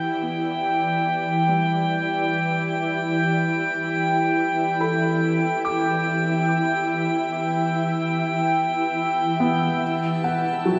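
Reflective and spacious, this short ambient fragment, cut from a longer piece, drifts through 10.8 seconds in a wet concert hall, where a shimmering, ethereal pad of sustained chords with octave-up shimmer fades in alongside a soft, felt-muted upright piano playing mellow, intimate arpeggios through delay. At the same time, a tense, string-like bowed drone with vibrato fades out, and an up-front glassy texture of drifting overtones hovers calmly above. The harmony rests on Em7 before turning to Bm7 at 9.8 seconds.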